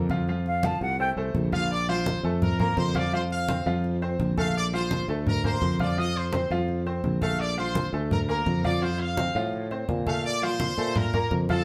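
Sunny and danceable, this short salsa excerpt moves in a straight 4/4 feel, the band heard playing live together in one room with a wet studio reverb. A bright grand piano with a polished, short-sustain tone carries the accompaniment throughout, while a sustaining fretless electric bass sits up front with a growly, amped character. Low-tuned congas with a thick, close skin sound enter at 0.1 seconds and hold the percussion role to the end. An airy concert flute with a crisp attack and straight tone plays a brief, expressive melodic figure from 0.5 to 1.1 seconds. From 1.5 seconds a tight, pop-style trumpet section takes over the melody with brilliant tone and vibrato, riding over a harmony that alternates between F and Bbmaj7, with a passing F7.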